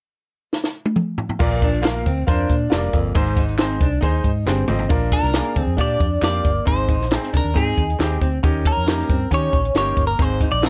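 A compact, dry cocktail drum kit opens this uplifting, uptempo 1960s-style soul excerpt at 136 BPM with a fill at 0.5 s, its punchy kick and high-tuned snare up front against dark cymbals. At 1.4 s the band drops in: a round, foam-muted electric bass; a bright, woody upright piano with audible action noise; a forceful baritone saxophone riff with scooped notes in the background; and tambourine, egg shaker and group handclaps. A moment later, at 1.6 s, a lo-fi, slightly broken-up guitar riff with vibrato joins them. Once the sax riff ends, a clean, compressed semi-hollow guitar takes the melody up front from 5.1 s through phaser and plate reverb, over chords moving among Bb, Ab and Eb7.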